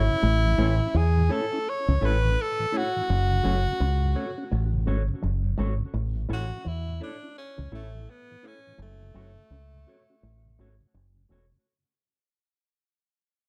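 Reggae with a laid-back, uplifting feel and a gentle swing, cut from a longer piece and fading out over its 11.7 seconds as the chords move between A and F#m. A breathy tenor saxophone with subtone, light vibrato and tape echo carries the jazz-style melody up front, over a round, deep dub fingered bass. Behind them, a dark, clean electric guitar with tape echo, a flute-like tonewheel organ through a slow rotary speaker and echo, and a twangy, compressed envelope-filtered guitar riff sit in a dry, dark production.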